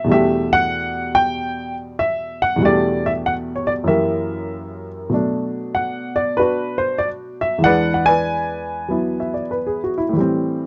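A swung eighth-note feel at 96 BPM in 4/4 carries this short solo jazz passage in E minor, its mood smoky and cool. A lone upright piano plays throughout the 10.7 seconds, ranging from E2 up to G#5, with a woody, slightly detuned character, short sustain and audible action noise that gives it an intimate, up-front presence. The harmony moves from Em11 to F#7b9 in the opening phrase, then shifts at 5.1 seconds into a new section that passes through Bm7 and E7 before arriving on Am7 at 10.1 seconds. Close, detailed microphones and a light touch of reverb keep the instrument present and near. The passage is cut from a longer piece.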